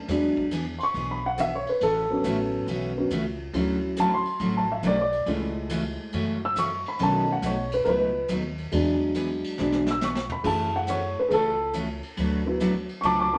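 A swung 4/4 pulse at 139 BPM drives this cheerful, playful slice of western swing country, cut from a longer piece and running about 13 seconds. A dark upright piano carries the lead from the first moment, its mellow, woody tone with long sustain sitting up front and taking a solo across the whole passage. Beneath it, a picked steel-string acoustic guitar adds bright, full-bodied accompaniment with audible finger squeak, while a pizzicato upright bass with gut strings gives a thumpy low end. A vintage brush drum kit with a tight kick, medium-tuned snare and dark, rolled-off cymbals keeps time softly in the background, breaking into a fill from 9.6 to 10.4 seconds. The harmony moves through jazzy changes such as E7, Dmaj7, B7 and F#m7 before settling on D6, and a wet studio reverb gives the whole band a sense of space.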